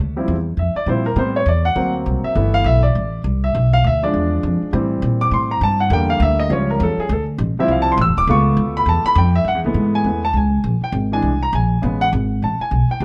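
Big band swing jazz at a brisk 203 BPM in 4/4, this sultry, swinging piece is cut from a longer performance and moves with a swung eighth-note feel. An upright bass opens at 0.0 s, its plucked, woody tone sitting up front, while a clear baby grand piano joins at 0.2 s and carries a solo across the whole passage with a clear, natural voice. The harmony is rich with extended and altered chords such as Dm11, E7b9 and C#7alt, giving the line a restless, smoky colour. At 9.5 s the key shifts from D minor to F# minor as the section repeats, passing through F#m11 and A#7#11 before landing on Amaj9. Light reverb and a dark, warm production frame the two instruments, keeping them close and intimate.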